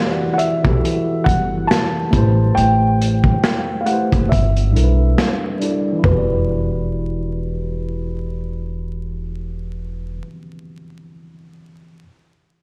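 A hazy, reflective lo-fi hip hop excerpt in E minor at 69 BPM with a swung feel opens on vinyl crackle and a filter sweep. A soft, felt-muted upright piano with audible action noise and delay carries the melody over a worn, slightly out-of-tune tine electric piano, lightly overdriven and tape-coloured, through Em9, Am9 and G69. A crunchy breakbeat kit with 12-bit sampler grit, a punchy kick, finger snaps and toms joins almost at once and stops at 6.3 seconds, while a woody, thumpy pizzicato upright bass on gut strings sits up front until 10.2 seconds, all in light reverb.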